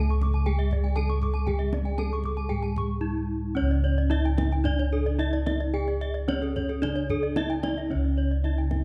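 This shimmering, brilliant passage of Balinese gamelan opens with bronze metallophones and bossed gongs sounding together, the gongs sitting up front with a round, mellow weight struck by padded beaters. Over them, a metallophone carries the melody with a dark, smooth tone from its horn mallet, while two higher metallophones spin arpeggios: one struck with a horn mallet and heard in a boxy small room, the other played with a wooden mallet for a ringing edge. Every metallophone uses paired tuning, so each stroke carries shimmering beats. A lower metallophone, soft and mellow under padded disc mallets, adds accompaniment until 3.6 seconds, when the music moves into a second section, and it rejoins at 7.9 seconds. The kendang stays in the background, deep and acoustic with a live-room air, as the uneven beats give the metre a subtly lilting pulse. Light reverb and close, detailed microphones keep the bronze textures clear in this brief fragment cut from a longer piece.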